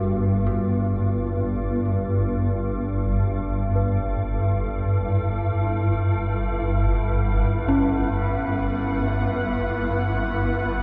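In free time and tuned to A4 = 438 Hz, this dark, cavernous ambient excerpt centres on an up-front swarming drone, detuned and granular, beneath a deep, moody sawtooth pad that fades in across the full 10.8 seconds with chorus and shimmer reverb, an eerie, inharmonic FM synth bell arpeggiating in the background, and a very quiet bronze singing bowl ringing with slow beating on B4, all bathed in a huge reverb as the harmony moves from G to Esus2 at 3.8 seconds.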